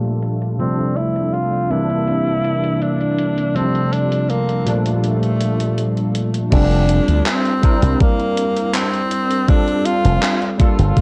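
A faded, nostalgic vaporwave excerpt in F major opens at an unhurried 81 BPM in straight 4/4, with a warm tenor saxophone carrying the melody over a bell-like tine electric piano, a lush unison pad and a gated 80s digital drum machine, all under a filter sweep. The saxophone sings up front with vibrato in a classical style, trailed by tape echo, while the clean, chorused electric piano outlines chords that cycle through Gm9, F6 and C9. Behind them the detuned, airy pad holds soft-attack sustained chords in the background, and the drum machine's crash, handclaps and hi-hat carry gated reverb, overdrive and gritty 12-bit sampler texture. At 6.5 seconds the pad stops as a punchy slap bass with an envelope filter and a thumpy, overdriven electronic kick drum enter up front, giving the second half more weight. The whole excerpt sits in a dark, warm, cassette-tinged production with a low-pass filter, light reverb and digital ambience.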